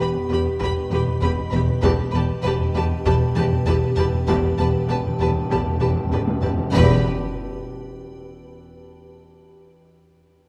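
Uneasy and ominous, this cinematic suspense cue in E minor moves at 98 BPM in a straight 4/4, cut from a longer piece and bathed in a dark scoring-stage reverb. A rich, smooth violin section carries the melody high above a clear second violin line, while violas, a woody cello section and an intense double bass section fill the background. Dark French horns and an icy, crystalline glass pad with chorus hold sustained chords, and a round analog bass riff and an eerie, warbling metallic drone sit low beneath them. A very quiet, band-limited taiko ensemble plays throughout, and the close, dry timpani join at 1.8 seconds as the harmony shifts from Em to Gadd9/E. A drum fill leads into a huge, dark impact at 6.7 seconds that rings out to the end as the chord returns to Em.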